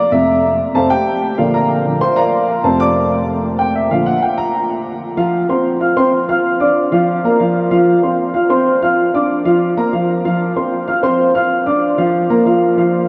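Joyful and festive, this brief latin excerpt in F major moves at a brisk 190 BPM in straight 4/4, with a solo baby grand piano carrying the whole 13 seconds across a range from F2 to F6. The dark, boxy piano sits up front, coloured by lush chorus and analog delay, while a huge ambient reverb soaks the mix in a dreamy haze. The harmony swings steadily between F and Bb, shifting to F5 and Bb chords from 5.2 seconds onward.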